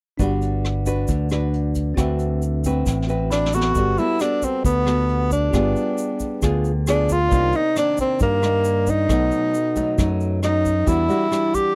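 A breathy, mellow tenor saxophone enters up front at 3.3 s with a light vibrato and scooped subtone notes over a relaxed, romantic bossa nova in G major at 135 BPM, where fingerpicked nylon-string guitar, a round and punchy fingered electric bass, a brushed vintage drum kit with a rolled-off top, a grainy egg shaker and a bell-like tine electric piano set in the background all sit in a dry, close 1970s-style studio sound, with drum and electric piano fills just before the chords shift at 3.8 s.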